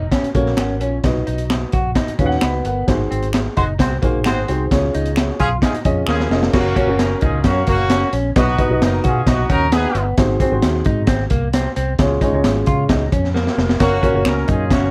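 A straight 4/4 groove of crunchy, saturated breakbeat drums with a punchy kick and high-tuned snare drives this joyful, uptempo 1960s-style soul excerpt, where a round, foam-muted electric bass and a boxy, slightly detuned upright piano sit alongside a lo-fi, slightly broken-up guitar riff, finger snaps join at 0.6 seconds, and a distant, roomy horn section adds a second line from 3.6 seconds, all set in light reverb.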